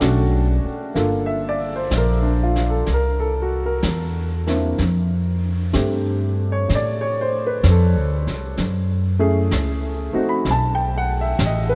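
The recording sits in a vast, echoing space, with a cathedral reverb trailing each sound for several seconds. This is an intimate, romantic jazz ballad at a slow 63 BPM in 4/4, its eighth notes swung, and the 11.8-second passage is cut from a longer piece. An upright piano with a natural, up-front tone plays accompaniment in the middle register. An upright bass, plucked on steel strings, gives a thumpy, woody low end close to the ear. A vintage brush kit sits further back, with brushes on a medium-tuned snare and hi-hat, its sound mid-forward with a rolled-off top. The harmony moves through rich chords such as Bm9, Gm9, C9 and F6, and it closes on an A7sus2.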